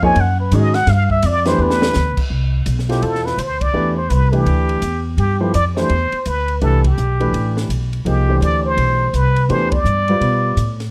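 A dark, warm production with light reverb frames this brief cut from a longer modal jazz piece, swinging in 4/4 at 167 BPM in C major with an open, spiritual mood. A trumpet with a plunger mute carries the melody up front, its bright, wah-wah tone close-miked and touched with plate reverb, opening with a muted solo passage through the first 2.3 seconds. An upright bass sits prominently beneath, plucked with a woody, growly character on steel strings, while a grand piano supplies natural-sounding accompaniment. A compact cocktail drum kit keeps a dry presence with dark cymbals, a high-tuned snare and a punchy kick, adding a short fill around 1.6 seconds. The harmony moves from Dbsus4 to G9 before settling on Cmaj9 as the second section begins at 2.3 seconds, and the band punctuates it with accents at 3.6, 6.8 and 9.7 seconds.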